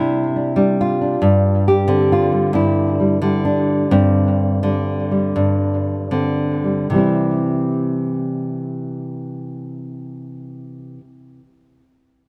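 A lone nylon-string guitar opens on a Csus2 chord in this peaceful folk excerpt, its thumb-plucked tone full-bodied and warm, set up front by close, detailed microphones with a touch of tape echo and light reverb. Moving in a slow, straight 6/8 in C major at roughly 37-46 BPM, the classical-style playing eases onto Gsus4 and slows down from 1.2 to 6.9 seconds. It then settles into a new passage on a plain C chord, and the guitar falls silent at 11.1 seconds.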